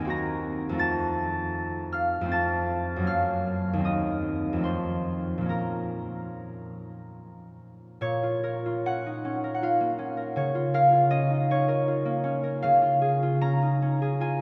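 Wistful and mysterious, this short excerpt of a classical solo harp piece moves in a flexible, rubato triple metre. A single concert harp sits up front, its fingerpicked, ringing tone spanning Eb2 to Bb6 and bathed in a long, wet cathedral reverb. An opening passage gives way at 8.0 s to a contrasting second section that carries on to 14.4 s.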